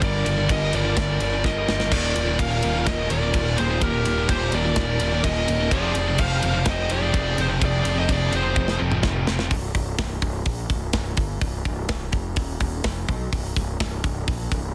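Heavy metal in C minor at 126 BPM in 4/4, relentless and aggressive, this section is cut from a longer piece and opens in half time. A tight metal drum kit sits up front with bright cymbals, a medium-tuned snare and a kick given soft clipping, with fills at 1.4 and 8.6 seconds. A punchy fuzz bass, overdriven and also up front, plays low beneath three bright, high-gain riff guitars, two of them set in the background, one of those double-tracked, and the third very quiet. Two dark, distorted lead guitars carry a melody and a second line, the second sitting further back with tape echo, until 8.8 seconds. A rich chamber string section, bowed sul tasto with a soft attack and a floating, pure tone, holds very quiet sustained chords through Gm, Eb5 and Fm until the guitars and strings drop at 9.5 seconds, leaving bass and drums to drive on C5 with a brief break. The mix is dry, with a dense, heavily limited modern master.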